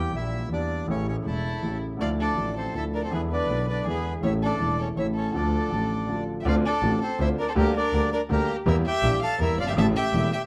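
Sultry and dramatic, this fragment of a longer tango moves in a rubato 3/4 at 162 BPM in D minor, with a reedy bandoneon carrying the melody up front while a woody upright piano accompanies and a distant, focused bowed double bass with vibrato holds the low end. At 1.3 seconds a single bowed violin enters on a second line, expressive and warm with soft attacks, vibrato and portamento. A brief break at 6.1 seconds leads into a new section, all set in moderate studio reverb with a dark production.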